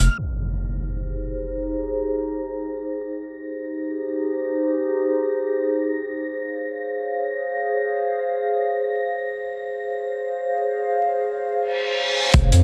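This drum and bass/jungle excerpt drifts in free time with a raw, nostalgic mood, opening on a thick, saturated sub bass hit and an electronic impact before a dark, warbling tape-like pad enters at 1.2 seconds, its detuned chords moving from Abmaj9/Eb to Bbm7 under chorus and reverb while an airy, breathy wind-like noise texture hovers high above until 11.6 seconds. A filter sweep runs through the passage, with vinyl crackle and a low-pass filter coloring the dense, heavily limited mix. A reverse cymbal at 11.7 seconds leads into the return of the deep sub bass and a gritty, crunchy breakbeat kit with a tight kick and hi-hat at 12.3 seconds.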